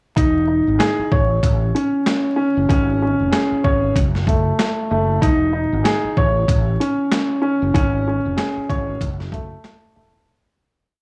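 Boom-bap hip-hop at 95 BPM with a confident, warm mood and a swung 16th-note feel, built on a dark, woody upright piano playing an eighth-note arpeggio repeated like a sampled loop over Emaj7, A, C#5 and F#m. A growly fretless electric bass with a chorus effect carries a deep looped line with muted ghost notes, while a gritty, sampler-style kit with a thumpy kick, high-tuned snare and quarter-note hats keeps the beat sparse. The dry, gritty recording carries vinyl crackle, and the piece fades out from 7.7 to 10.3 seconds.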